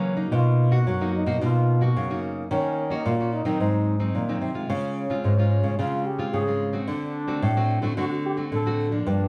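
Samba and choro in a bittersweet, nostalgic mood, this short excerpt sets a breathy, distant trombone melody with light vibrato and a soft, whispered attack against two up-front nylon-string guitars, one fingerpicked on fresh strings for the accompaniment and one thumb-plucked for the bass line. The chords move from Bmaj7 through Ebm7 and Ab7 to Dbmaj7, then touch D7 at 6.9 seconds, all within a moderate studio reverb that gives the mellow, jazz-style trombone an intimate, roomy glow.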